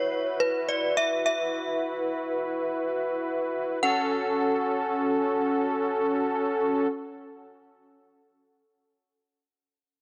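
Synth-pop with a cool, nocturnal mood, this short fragment pairs a ringing, inharmonic FM chime melody, shimmering through ensemble chorus, phaser, tremolo and analog delay, with a bold, fat analog synth brass accompaniment of detuned sawtooth tone, vibrato, chorus and a filter sweep. Both parts sit up front and sound together from the start, with the harmony moving from Esus2 to F#m at 3.8 s. A moderate plate reverb surrounds the sound; the brass drops out at 6.9 s and the chime rings on until 7.6 s.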